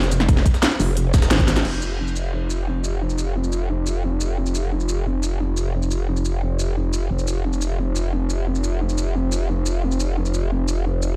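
A growling, wobbling bass and a crisp electronic drum kit open this dark, technical drum and bass excerpt, cut from a longer piece, with a mechanical, futuristic mood over a straight four-beat feel. The bass sits low and up front, its sine-based tone shaped by a formant filter and given a fast attack, sustained body, tube saturation, chorus and sidechain pumping for an aggressive, compressed bite. The main kit brings a cracking snare, crash cymbal, hi-hat and shaker, layered and tape-tinged. In the opening moments a tight electronic kick joins alongside a very quiet, gritty, pitched-up breakbeat layer of sampled hi-hat and medium-tuned snare, leading into a band accent at 1.3 seconds and a drum fill at 1.5 seconds. From 1.6 seconds a new section carries on with the growling bass and main kit, all set in a large, reverberant digital ambience that sounds like a big sound system in a bare room.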